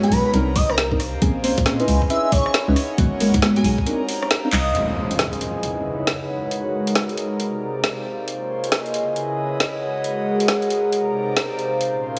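A swung two-step garage groove at 136 BPM in 4/4 drives this late-night, moody UK garage excerpt, with an up-front, overdriven garage kit of woody snare, metallic hats, handclaps and rim clicks running throughout, joined by a knocking electronic kick from 0.6 to 3.8 seconds. For the opening 4.7 seconds, a hollow, organ-like FM bass, deep mellow chord stabs soaked in phaser and dub echo, and an airy, dreamy lead with vibrato and portamento cycle through Cm9, Bbm9, Dbm9 and Abm9. A break, a drum fill and an electronic impact then clear the way for the airy, breathy pad and a warbly, nostalgic tape-like pad, both present from the start and pumping under sidechain as a filter sweep moves across the pad. The mix sits in a lush hall reverb yet comes across heavily compressed, with a radio-like squeeze.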